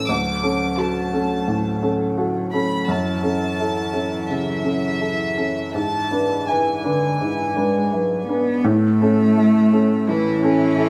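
Hopeful and intimate, this short neoclassical piece for piano and strings moves at an unhurried 85 BPM in 4/4, breathing with a rubato feel in A major, tuned slightly low with A4 at 435 Hz. A violin section carries the melody up front, its tone pure and floating with a soft attack and a smooth top, the bowed ensemble played sul tasto. Beneath it, a single cello sings a close second line, with light vibrato and an airy bow. An upright piano supplies the accompaniment, its sound worn, woody and slightly detuned, with long sustain that lets the chords ring open. The harmony drifts from Dmaj7 through F#m7 and E7/G# before a new section arrives at 8.7 seconds and settles on A. The players share one stone room whose wet reverb surrounds them, and a faint mains hum sits beneath this fragment of a longer work.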